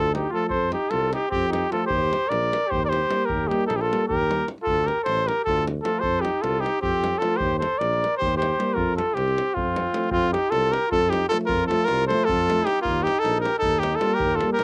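An up-front trumpet carries the melody of this festive, virtuosic Balkan brass band piece, its tone warm with light vibrato, a soft attack and a smooth top, played in a classical style. The music moves in a straight 7/8 at 307 BPM counted in eighths, centred on F mixolydian and drifting through D minor, F and E-flat chords. Beneath the lead, a clear, vintage-sounding flugelhorn plays a second line, while two dark euphoniums with light vibrato sit in the background as accompaniment from 0.3 seconds. A tuba anchors the bass, and a deep, compressed, saturated davul keeps the percussion going. The trumpet, flugelhorn and euphoniums carry the grain of cassette tape, and the whole home recording sits in light reverb, shifting from its opening section into a new one at 10.1 seconds before this cut from a longer piece ends.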